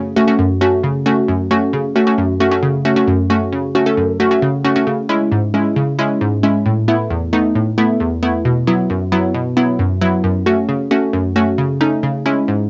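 Pop with a cool, driving mood at 134 BPM in a straight 4/4, this excerpt from a longer piece features a lone analog pluck, up front and bright, its round sawtooth and square-wave tone carrying a noise layer, a fast-attack filter pluck and decaying notes, colored by chorus and cassette tape. The part spans E2 to A4 over chords moving from F#m through C#m, Asus2 and Bsus4 before returning to F#m and C#m, with a new section arriving at 4.9 seconds. It sounds like a home cassette recording in a small room with moderate ambience.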